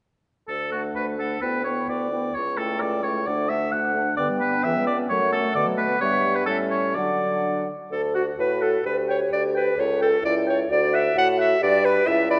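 A moderate concert-hall reverb surrounds this spirited, graceful classical-period movement for wind quintet, a quick passage in two cut from a longer piece. The oboe, up front with a warm second line, and the bassoon, carrying the bass with light vibrato and a soft attack, begin at 0.5 seconds. At 0.7 seconds the pure, crisp-edged flute joins with the melody from the background, while the bright clarinet and the distant, roomy French horn fill out the accompaniment over a harmony that moves into a second section at 7.9 seconds.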